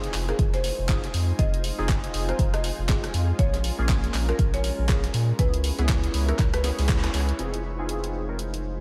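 Light reverb and digital ambience frame this smooth, warm deep house passage, where a deep, tape-warm electronic kick and a layered kit of handclaps, hi-hat and rim click ride a swung groove alongside a very quiet, gritty breakbeat sampler kit of hi-hat and snare, while a round, dark analog bass sits up front, a detuned sawtooth pad holds sustained chords in the background, chorus-and-phaser keys jab short filtered stabs through analog delay, a blurred granular cloud pad drifts above, and a dry, buzzing hard-mallet marimba plays a woody melody until a band accent at 6.9 seconds leads into a closing turn back to Fm7.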